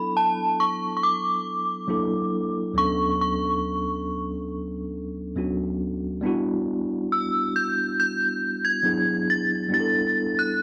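Longing and moody, this short R&B excerpt moves at a slow 69 BPM in a straight 4/4, set in E dorian. A vintage FM synth chime carries the melody high up, its inharmonic, ringing tone striking with a fast attack and then decaying into a long release, thickened by ensemble chorus and repeated by tape echo, with a warbling quality throughout. Beneath it, a tine electric piano plays the accompaniment from the low register up to the middle, sounding clean as if through its built-in speakers, with both parts placed up front. The harmony drifts from D69 through F#7alt and Bm9/D to Em9 at 6.2 seconds, closing on E7 and A9sus4. A moderate studio reverb and the cassette tape colour of a home recording give the whole 10.6 seconds an intimate, worn character.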